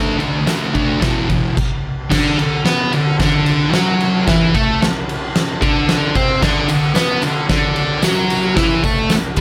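A thick, double-tracked fuzz guitar drives this rowdy, swaggering garage rock excerpt at 111 BPM in D mixolydian, its distorted riff punching through over D5 and E5 power chords, joined at 0.2 seconds by an oversized, low-tuned acoustic drum kit with a boomy kick, fat snare, dark cymbals and a gritty, pumping big-room sound, before a stop at 1.6 seconds and a return on D at 2.1 seconds, while a jingly tambourine sits in the background, appearing briefly at 0.5 seconds and returning from 6.7 seconds, all in light reverb.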